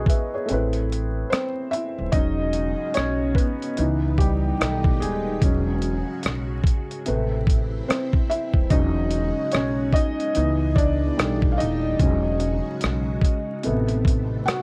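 Crackling with vinyl noise in a light reverb, this mellow, cosy lo-fi hip hop piece in E major drifts at 73 BPM with a swung 4/4 feel: a felt-muted upright piano, soft and intimate with audible action noise and cassette tape colour, takes a solo from 2.1 seconds over a woody pizzicato upright bass and a gritty, compressed sampler-style drum kit with a thumpy kick, hi-hat and rim click, while a lush, vintage string machine ensemble with phaser and chorus sustains chords such as Amadd9, E69 and C#m9.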